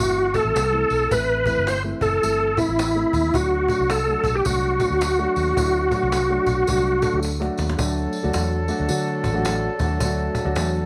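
A swung, danceable groove drives this uplifting 1960s-style soul excerpt, where a reedy, up-front tonewheel organ with key click, chorus vibrato and fast rotary speaker carries the melody until 7.2 seconds over a dark, mellow upright piano, a round, foam-muted fingered electric bass, a woody cajon sitting in the background and a jingly, distant tambourine, before a drum fill leads to a punchy horn section that takes a clear second line from 7.8 seconds, all in light small-room reverb.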